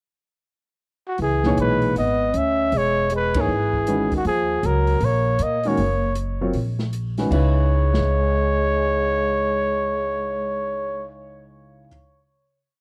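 After a short pickup bar, a breathy trumpet enters at 1.1 s, and trombone, upright bass, drums and piano join almost at once in this spiritual, hypnotic modal jazz piece in C# dorian, swinging in 4/4 at 157 BPM. Up front, the trumpet carries a motif-based melody of hook phrases with a mellow, whispered tone, light vibrato, soft attacks and scooped notes, while the trombone follows in vibrato-laden harmony mostly in thirds. The woody pizzicato bass plays a two-feel line, and the piano adds syncopated comping in quartal voicings, with audible action noise and a warm, deep low end. A dark, small-room drum kit keeps time with sticks on the hi-hat over a punchy kick, the whole band hits an accent at 3.3 s, and the drums drop out at 8.1 s. The harmony moves from C#m9 to D#m7 and settles back on a final C#m9 chord, all captured in a dry, close 1970s-style studio sound.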